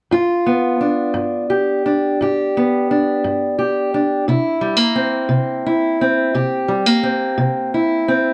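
A boxy, up-front fingerpicked steel-string parlour acoustic guitar plays alone through this swaggering, rollicking blues fragment in G mixolydian, rolling along at 58 BPM in a straight 12/8 from G7 at 0.1 seconds to C7 at 4.3 seconds until it breaks off at 8.3 seconds, set in moderate studio reverb with a dark production.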